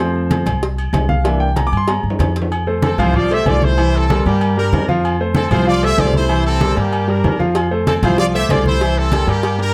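A clear, up-front concert grand piano with audible action noise and deep bass leads the opening 2.5 seconds of this joyful, danceable salsa excerpt in F major at 191 BPM, alongside a woody, thumpy pizzicato upright bass, soft-handed congas in the background, a tight high-tuned cowbell and ringing vintage timbales and agogo bells, until a drum fill ushers in a brilliant, punchy horn section with light vibrato and slapback echo carrying the melody from 2.8 seconds, all captured with close, detailed microphones and light reverb.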